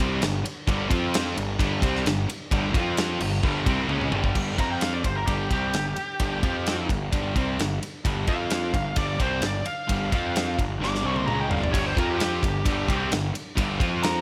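A light small-room reverb frames this menacing, heavy hard rock excerpt, where a bright cranked stack guitar, a hollow-body overdriven semi-hollow guitar and a double-tracked tight distorted guitar sit in the background on the riff over a growly fuzz bass. The chords alternate between G5 and F5, and the tight distorted guitar drops out at 4.3 seconds before returning at 11.7 seconds. An up-front acoustic kit with a tight kick and rolled-off top plays drum fills, while from 4.6 seconds a high-gain lead guitar, warm and distorted with digital delay, takes a solo.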